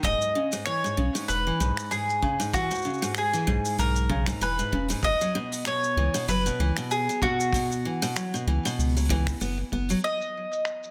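A lightly reverberant studio sound frames this hopeful, pastoral folktronica excerpt at 96 BPM with a gentle 16th-note swing, where a round, double-strung mandolin melody with delay sits up front over bright picked steel-string acoustic guitar arpeggios, also delayed, a deep sine sub bass, a punchy natural kick and a soft brush kit with finger snaps, hi-hat and shaker under low-pass filtering, moving from E6 to F#7sus4 at 5.0 seconds before the guitar drops out at 10.0 seconds and the mandolin rings on to 10.9 seconds.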